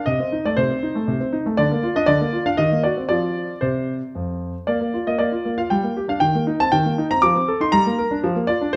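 Close, detailed microphones put a clear concert grand piano up front in a moderate recital-hall reverb, its deep bass and short sustain giving the smooth, vintage-toned instrument a clear presence. This restless, serious classical-period sonatina in B-flat major moves at 118 BPM in 3/4 with a rubato feel, the solo piano spanning F2 to D6 across the 8.8-second passage cut from a longer piece. The harmony opens on a diminished chord and winds through half-diminished and minor colours before settling back on B-flat over F at 8.2 seconds.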